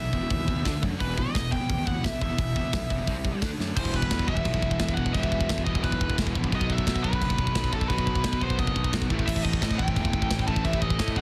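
Dark and aggressive, this heavy metal passage sets a nasal, overdriven lead guitar with a parked wah carrying the melody over a bright wall of picked riffs from a distorted electric guitar, a high-gain distorted guitar and a very quiet, double-tracked fuzz guitar, all anchored by a growly fuzz picked electric bass. A tight metal drum kit sits up front from 0.1 s, driving with kick, medium-tuned snare, hi-hat, crash and china cymbal, and its fill at 3.6 s launches a new section at 3.8 s. The sound is dry, dense and heavily limited.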